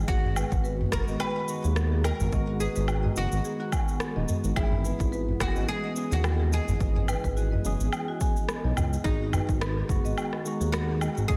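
Swung 16ths at 107 BPM drive this hypnotic, meditative organic downtempo excerpt in G# minor, where a punchy overdriven electronic kick, a tape-tinged electronic shaker, woodblock and rim click with softly clipped snare, and a small vintage udu in the background until 9.5 s underpin a smooth, mellow synth bass pumping up front, a worn, slightly out-of-tune tine electric piano with delay and sidechain pumping, a very quiet ethereal detuned pad, dark medium-mallet marimba arpeggios and a woody, plectrum-plucked fretless oud melody, both carrying delay, over G#m7 and C#m7 chords, before a ringing bronze singing bowl with slow beating enters at 9.1 s, all set in a small, lightly reverberant room.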